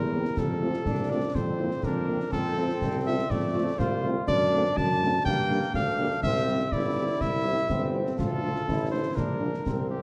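A close-miked, warm solo cornet carries the melody up front in this rousing, proud military-style wind-band march in F major at 123 BPM in 2/4, over clear, vintage-toned trombones holding sustained chords, a tuba bass with light vibrato, a very quiet, dark French horn section filling in the accompaniment, and close concert snare, bass drum and shadowy clash cymbals, all set in a wet scoring-stage reverb with a mellow production that carries lossy compression artefacts in this 10-second cut from a longer piece.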